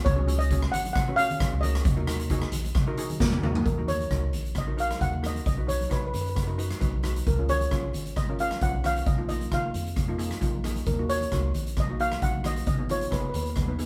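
Calypso in Eb minor at 133 BPM with a light sixteenth-note swing, this short cut from a longer piece carries a tense, dramatic mood. A lead steel pan, played with soft rubber sticks, sits up front with a mellow, dark, shimmering tone, while a second pan in the double seconds range uses hard rubber sticks for a bright, metallic accompaniment beneath it. A deep, round sine sub bass with a fast attack holds sustained notes underneath, and a polished acoustic street-band drum kit, also up front, fills a big, airy room with a boomy kick, medium-tuned snare, rim clicks, hi-hat and toms. Compressed, saturated congas with a thick-skinned, medium tuning sit in the background. A drum fill from 3.2 to 3.7 seconds leads into the second section, where the harmony moves through Ebm7, Bmaj7, Db, Bbsus4 and Ebm7 again before arriving at Abm7, all heard as a band playing live in one room with moderate studio reverb.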